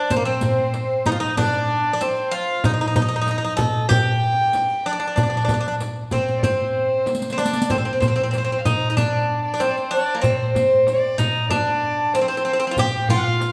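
Soulful and melancholic, this Turkish makam ensemble excerpt moves at a straight 95 BPM in 4/4, led by an up-front, metallic, picked Greek bouzouki with doubled strings carrying the melody, while a soft-attack, airy, floating bowed violin adds a pure second line above, and a crisp metal-shell darbuka, a small bright frame drum in the background and a riq with bright jingles and soft hands keep time, the darbuka, frame drum and riq close and dry, with a short drum fill at 7.1 seconds, all set in the reverberant wash of a recital hall.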